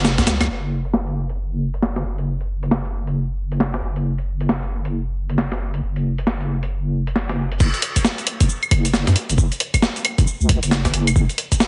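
A deep, wobbling bass with a dark, detuned square-and-sine tone and a touch of chorus sits up front in this bouncy, soulful two-step UK garage clip at 135 BPM, swung on the sixteenths. A gritty, pitched-down sampler-style kit with a high-tuned snare, hi-hat, cabasa, claves and crash opens with a drum fill, its filtered hits carrying a large-room character, while a thumpy electronic kick lands briefly at 0.2 seconds and returns for the drop at 7.6 seconds. The mix is dry and heavily compressed, with a dulled, radio-like top end.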